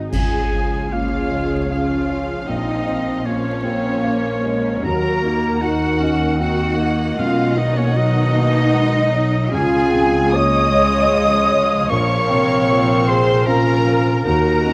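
Hopeful and moving, this rubato excerpt of a cinematic orchestral film score in 3/4 at 77 BPM in Db major sets a veiled, con sordino chamber violin section on the melody over a felt-muted upright piano with audible action noise, muted symphonic violas, cellos and double basses, and mellow French horns holding sustained chords. Second lines come from a hollow flute, a clear oboe, a very quiet muted symphonic violin section and a mellow clarinet entering at 0.9 seconds, while a dark cymbal and bass drum accent sounds near the start. Everything sits in light reverb with close, detailed microphones and vinyl crackle.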